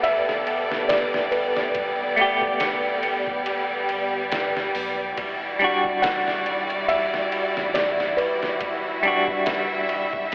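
Trip hop with a dark, brooding mood, where a muted felt upright piano, carrying sampler grit, dub echo and audible action noise, plays the melody until 9.4 s over a clean semi-hollow electric guitar with tremolo and tape echo, lush bowed violin chords with vibrato, a round sub bass in the background, and a compressed, pitched-down sampler drum kit with a thumpy kick, the whole mix soaked in huge, dreamy reverb and a telephone-like tone.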